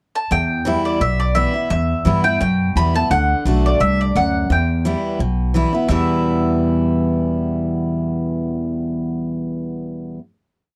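A dry, dark production frames this short, lonesome and haunting bluegrass piece in E minor at 172 BPM with a light swing, where an up-front mandolin picks a motif-based melody of song-like phrases on its double strings, an equally forward, bright, full-bodied dreadnought guitar on fresh strings alternates bass notes and strums with bass runs, and a thumpy gut-string upright bass plays a pizzicato two-beat root-and-fifth line with walk-ups, moving from Em to D and back before settling on a final chord at 5.9 seconds.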